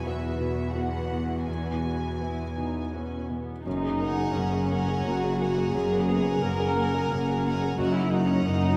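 Cinematic, emotional orchestral film score in a rubato 3/4, moving and uplifting, where a violin section sings the melody with light vibrato over a felt-muted upright piano whose mellow tone carries audible action noise, soft sul tasto violas, a ringing fingerpicked concert harp playing arpeggios and a close, intimate cello section on the bass, joined by a double bass section at 3.7 s and a second violin line at 4.0 s, all bathed in the long wash of a vast cathedral reverb.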